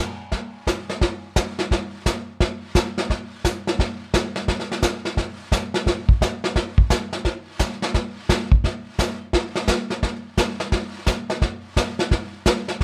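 A vintage brush drum kit comes in at 0.3 seconds and carries this short jazz passage on its own until it ends at 12.8 seconds. The tempo is a brisk 173 BPM in 4/4, with the eighth notes swung at 65%, giving the groove a relaxed, swinging mood. Brushes play the medium-tuned snare alongside hi-hat and a tight kick. The kit has an acoustic, small-room character, warm with a rolled-off top, and it sits up front in the mix. Close, detailed microphones capture the playing, touched by a light reverb, in what sounds like a section cut from a longer piece.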